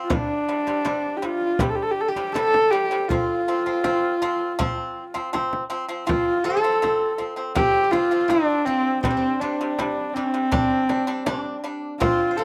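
Captured outdoors under a light reverb, this excerpt of Mongolian folk music feels vast and proud, moving in a straight 4/4 that shifts into a new section at 6.1 seconds. A single bowed horsehead fiddle carries the melody up front, its husky, earthy tone shaded with light vibrato and portamento. Behind it, a silvery steel-string zither rings out a second line and a bright, percussive pipa picks out arpeggios, both fingerpicked and touched with slapback echo, while a deep, close frame drum struck with hard hands grounds the music from 0.1 seconds.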